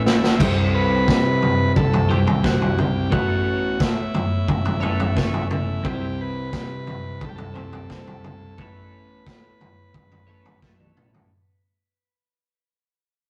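The steady, straight 4/4 pulse at 88 BPM comes from an up-front vintage drum kit with dark cymbals, a tight kick and gritty saturation, opening and closing with drum fills across this hazy, kaleidoscopic psychedelic rock excerpt that fades out throughout, as a bright, twangy twelve-string electric guitar riffs through a rotary speaker, a buzzy overdriven combo organ carries the melody until 10.6 seconds, and a round fuzz bass sits in the background under C and Aadd9 chords, all in a rough rehearsal-room recording with tube saturation and stone room reverb.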